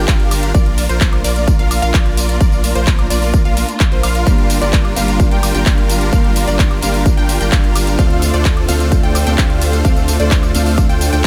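Festival progressive house in G minor at 129 BPM, this emotional, euphoric excerpt from a longer track drives on a punchy, up-front electronic kick and a big-room kit of handclaps, metallic hats, ride cymbal, tambourine and woodblock, while huge, bright detuned supersaw chords carry the riff over a thick, saturated sine sub bass, a faint downlifter sounds in the first 0.5 seconds, a full-bodied wave-folded pluck plays delayed arpeggios and a dark, bowed string section holds vibrato chords in the background, all pumping to the sidechain, and a woody, boxy picked acoustic guitar with old strings joins at 4.3 seconds, moving through Gm7, Bb and Dm7 in a dry, close mix.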